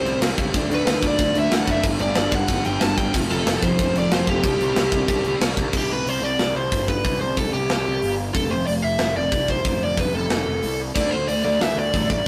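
A rough rehearsal-room recording with warm saturation and light reverb frames this energetic, rowdy punk rock excerpt, driven by a tight, up-front drum kit with bright cymbals and a medium-tuned snare. A biting overdriven guitar carries the melody through a touch of delay, over a growly, fuzzed-out picked bass and a double-tracked, hollow-bodied semi-hollow guitar riff. That riff drops away at 5.7 seconds as the feel shifts to half time, then returns at 10.9 seconds just before the cut.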